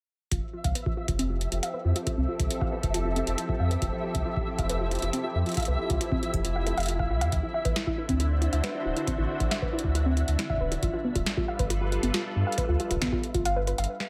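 A round, up-front sub bass with tube saturation anchors this playful, wistful IDM fragment alongside a dusty, warbling pluck that spins detuned arpeggios through chorus, delay and a filter sweep, a silky string machine holding phased, chorused chords with vintage sampler grit and sidechain pumping, a booming analog drum machine with crisp snare and metallic hats, a deep tape-warm electronic kick, and a faint flickering granular texture, all moving from Fmaj7 to D7 at 7.3 seconds and G7 at 10.8 seconds in a light reverb.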